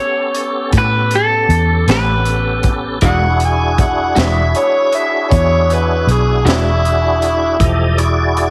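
A laid-back, soulful slow blues in 12/8 at 52 BPM, this short excerpt sits in E mixolydian, moving from A9 to E9 at 3.0 seconds over a crunchy, gritty breakbeat kit with a high-tuned snare, punchy kick and hi-hat, plus a round, foam-muted fingered bass placed up front. A twangy, picked electric guitar on the edge of break-up carries the melody until 4.9 seconds, while a clean, full tonewheel organ holds chords through chorus vibrato and a slow rotary speaker, and a second guitar through a small old amp adds compressed accompaniment with harmonic tremolo. From 3.1 seconds an overdriven, amplified harmonica takes a jazz-style second line with scooped notes, tongue slaps and analog delay, all under light reverb and a heavily compressed, radio-like sound.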